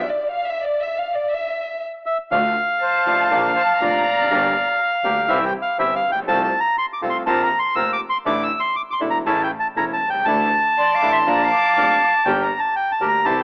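Passionate and tense, this tango excerpt in D minor moves at 121 BPM in 4/4 with a rubato feel. A chamber violin section opens alone, its bowed lines close and expressive with vibrato and portamento, before a reedy, up-front bandoneon takes the melody from 2.1 seconds. Beneath it, a brilliant grand piano with deep bass supplies accompaniment, a second, airy bandoneon adds stabs, and a single bowed double bass gives a biting, intense low line with a smooth top. A pure, metal-toned concert flute with soft attack joins the violins on a second line, returning with them briefly at 10.8 seconds. The harmony passes from Dm through Bb, Gm, C and F/C to Bbsus2, Asus4 and A before moving through Dsus2 and Bb to Gm. Moderate spring reverb, cassette tape coloring and a narrow telephone-like tone give the home recording a worn, intimate character.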